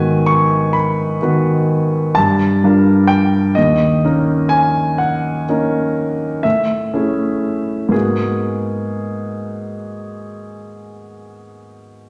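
Classical impressionist solo piano with a hazy, mysterious mood, unfolding in a slow, rubato 9/8 over a drifting sequence of seventh chords that moves from G#m7 to a closing G#m9 in this 12.1-second fragment of a longer piece. The grand piano sounds clear, intimate and up front, with the natural noise of its action audible, and spans from the low bass to the upper treble. A wet recital hall reverb surrounds the instrument and adds to the dreamy haze.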